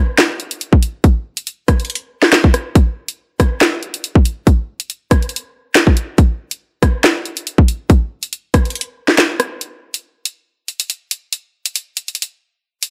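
A cold, menacing hip hop excerpt at 140 BPM in a half-time 4/4 feel, built on an electronic drill kit that sits up front over a digital ambience. From 0.2 seconds the kit's hard-clipped kick, sharp snare, rim clicks, handclaps and warm hi-hats carry the track. The kick drops out from 8.8 to 9.6 seconds, just before the music moves into a new section that runs to the end.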